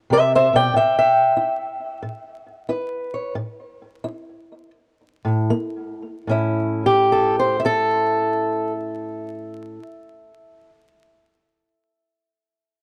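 A dark, boxy fingerpicked acoustic guitar sits up front and plays alone through this short cut from a longer piece of swaggering, soulful acoustic country blues in A mixolydian, swung in 4/4 at around 76-94 BPM. After a D7 opening it moves to A7sus2 and slows from 0.7 seconds, with a stop until 5.5 seconds, then a second passage from 6.3 seconds settles on A7. Close, detailed miking, light reverb and a layer of vinyl crackle give it an intimate, old-record character.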